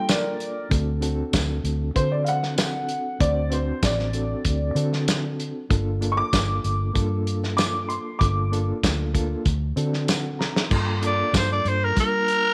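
Straight-eighth soul blues with a mournful, soulful mood, where a dark, woody, slightly detuned upright piano with audible action noise takes the lead until 8.5 seconds over a reedy electric piano with fast tremolo, a round, foam-muted electric bass and a tight, up-front soul drum kit with dark cymbals and tambourine, before a raspy, growling tenor saxophone enters at 11.1 seconds in this excerpt from a longer piece, all in a small room with light reverb.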